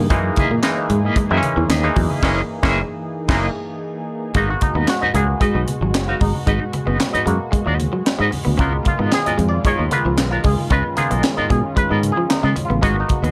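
Funky and sly, this straight-feel funk excerpt pairs a bright, scooped envelope-filtered guitar with tremolo and a slightly broken-up riff guitar over a growly fingered bass, a crisp fusion kit with punchy kick, handclaps and bright cymbals, background congas and a detuned sawtooth pad with chorus, while a stringy auto-wah clav stabs through a band accent at 2.2 seconds before taking a solo from 4.3 seconds as the chords move from F#13 through G#m7 to C#13.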